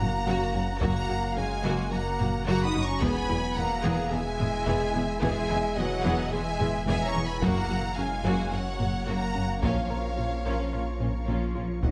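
Tense and relentless, this cinematic hybrid of orchestral and electronic film score sets a lush, vibrato-rich violin melody over a soft-attack second violin line, intense violas, mellow, distant French horn chords, a shimmering granular pad with chorus and reverb, very quiet arpeggios from a tight, nasal sawtooth synth, focused cellos, bowed double basses, a thick, saturated sub bass and hard-stick taiko in a small room, closing with a huge, bright but barely audible impact at 11.8 seconds.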